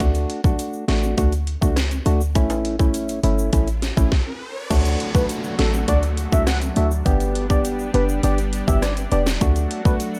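Sunny and summery, this dancehall cut moves at 102 BPM in D major, opening with a tight electronic drum kit, a punchy, sine-based 808-style bass and a hollow, dark organ stab with chorus, while tube shaker and timbales sit close and dry in the background. A riser starts at 3.5 seconds, the groove stops briefly at 4.1 seconds, and at 4.7 seconds a lush, bright, detuned unison pad arrives as the chords move through D, G and back to D. A soft, round, octave-layered synth lead with vibrato and chorus carries the melody from 5.1 seconds in this dry mix.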